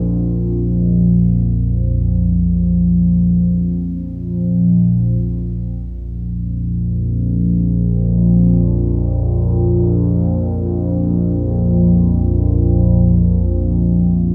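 Drenched in a 2.1-second echo-chamber reverb over a small room's ambience, this cavernous, dark ambient piece cut from a longer work drifts in free time as an up-front analog drone of detuned sawtooth and pulse-wave tones, slow to bloom and long to fade, sustains and evolves between Bb1 and F2 under chorus and phaser, shifting into a new section at 5.2 seconds.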